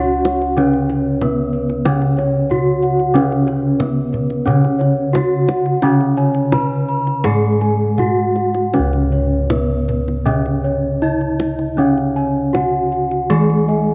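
Javanese gamelan in C# slendro, ceremonial and shimmering, moving at 79-93 BPM in a straight 4/4 across a short cut from a longer piece that shifts into a new section at 8.7 s. A bronze metallophone struck with a wooden mallet carries the melody up front with tape echo and paired-tuning beats, while a second metallophone played with horn mallets supplies accompaniment, and a third, mellow under padded disc mallets, joins round, padded bossed gongs in arpeggios. Deeper bossed gongs hold the bass in the background, a tight, dry kendang keeps time from 0.2 s to 13.6 s, and a moderate plate reverb with a 2.7-second decay surrounds the ensemble.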